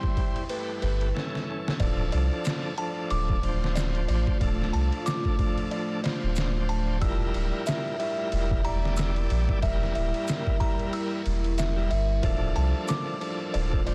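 A dense, heavily limited modern master with digital ambience frames this hypnotic, smoky trip hop excerpt in D minor at 92 BPM with a swung 16th feel, where a muffled, pitched-down sampler-style drum kit with a thumpy kick and overdrive sits up front, a round sine sub bass enters at 0.8 seconds, a shouting tonewheel organ plays accompaniment through fast rotary speaker, tremolo and tape echo, a detuned sawtooth pad holds dark, chorused chords, a delicate vintage music box tinkles arpeggios through tape echo, and close acoustic maracas arrive in the background at 2.4 seconds.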